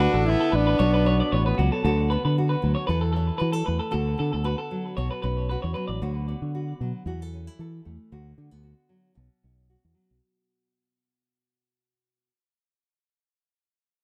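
A lightly swung sixteenth-note groove in four drives this joyful, danceable highlife passage, cut from a longer piece and heard in a dry, close sound. A breathy alto saxophone carries the melody up front with subtone, scooped notes, vibrato and a jazz feel. A brilliant, forceful trumpet with tape echo sits distant and roomy on a second line, and both horns drop out at 1.6 seconds. Beneath them, a round, punchy fingered electric bass holds the low end until 10.2 seconds, while a clean, twangy electric guitar picks tape-echoed arpeggios through the first half. A fingerpicked nylon-string guitar with a deep classical tone keeps up the accompaniment throughout, as the harmony keeps returning to D6 between B and A chords and the track fades out from 1.8 seconds.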